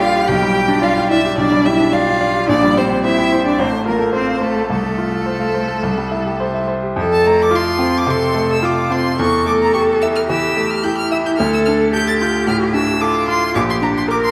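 Set in a wet concert hall with a long reverb tail, this short cut from a quick, spirited and graceful classical-period movement for piano trio moves at 109 BPM in 4/4 in F major. A bright, brilliant grand piano sits up front with polished, long-sustaining accompaniment, while a smooth, even violin carries the melody high into its range with vibrato, and a focused cello adds a second line beneath, both bowed by single players with a somewhat distant, rich tone. The three play together throughout, and at 7.0 s the music moves into a new section that passes through D minor before reaching G minor over B-flat.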